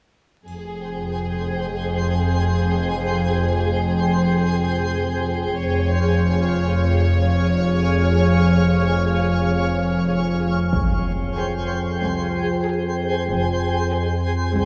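Cinematic suspense film score at 94 BPM in F minor, uneasy and mysterious, cut from a longer piece, where a lush, vibrato-rich violin section carries the melody over background cello and double bass sections and a warbling, chorused analog drone, while an up-front twinkling granular texture sustains chords with octave-up shimmer, a faint triangle sounds from 0.5 to 1.7 seconds, a huge dark impact lands at 10.7 seconds as the harmony moves from Fmadd9 through Db/F and back, and vinyl crackle sits under light reverb.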